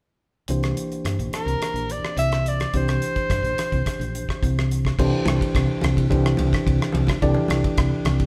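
Electric jazz fusion at 107 BPM in a straight 4/4, funky and slick, cut from a longer piece in C mixolydian, with bright tine electric piano comping over a C9 chord, a dark, round fretless bass and a dry, damped 70s drum kit sitting up front with crash, ride, hi-hat, a tight kick and rim clicks. A smooth soprano saxophone with light vibrato takes a short solo from 1.3 to 4.7 s, and after the harmony moves to Cadd9 at 5.0 s, ringing, hard-hand congas enter in the background at 5.3 s. The band plays live together in one room, wrapped in a wet stone reverb.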